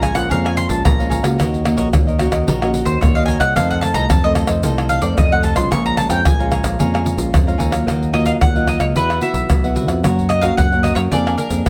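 Yearning and bittersweet, this short samba and choro excerpt moves at 111 BPM in Bb minor, with an up-front, woody mandolin taking a solo over crisp picked cavaquinho, small fingerpicked nylon-string guitar, growly fingered electric bass and a close, dry percussion bed of tube shaker, pandeiro, tamborim and tight surdo played with soft hands, before the harmony shifts to Eb minor at 7.9 s in a moderately reverberant studio space.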